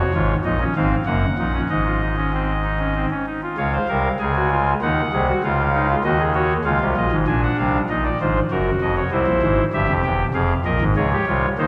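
A straight, unhurried 3/4 pulse at 97 BPM carries this solemn, serious baroque-style fugue in three parts, played in Db major with the tuning set to A4 = 441 Hz. A single pipe organ on a soft reed registration plays alone for the whole 11.7 seconds, its oboe solo stop sitting up front with a reedy edge and a touch of chiff. The baroque voicing spreads the three lines across a span from E1 to Ab5, reaching deep into the bass beneath the upper voice. The harmony moves from Db through Ebm/Gb and Ab, returns home at 3.6 seconds, and then takes a darker turn through Bb7, C7 and Fm before settling back on Db at 11.0 seconds. Opening material comes back at 7.3 seconds after a contrasting middle passage. A lush church reverb with a 3.3-second decay surrounds the organ with cavernous space, and the clip is cut from a longer piece.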